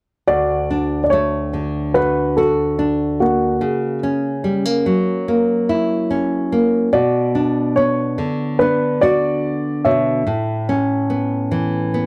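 A dry, close 1970s-style studio sound with light reverb frames this heartfelt, nostalgic folk excerpt at 72 BPM in D major, where an up-front dark baby grand piano carries a mellow, intimate melody with audible action noise over a full-bodied, fingerpicked nylon-string guitar with finger squeak, both entering at 0.3 seconds and moving through Dmaj7, F#7/C#, Bmadd9 and Aadd9 before the piano stops at 11.5 seconds and the guitar at 12.1.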